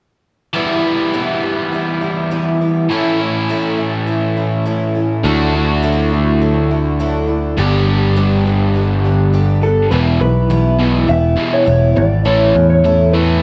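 In a straight 4/4 at 102 BPM, this jangly, hopeful rock excerpt from a home cassette recording opens with a shimmering, octave-doubled twelve-string acoustic guitar and a crunchy, double-tracked overdriven guitar riff moving through Em, A, Dadd9 and G, with a direct, up-front picked electric bass entering at 5.2 s and a dark, compressed electric slide guitar melody arriving at 9.6 s, all in moderate studio reverb.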